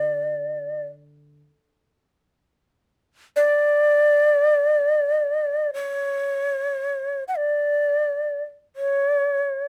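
Closely miked and finely detailed with a light touch of reverb, this brief fragment of Japanese traditional chamber music unfolds in free time with an austere, calm mood. A breathy, end-blown bamboo shakuhachi sits up front and carries the melody throughout, moving between C#5 and F#5 with soft attacks and gentle vibrato. A bright, dry, woody koto, plucked with fingerpicks, sounds faintly on a low D3 for only the first 1.4 seconds.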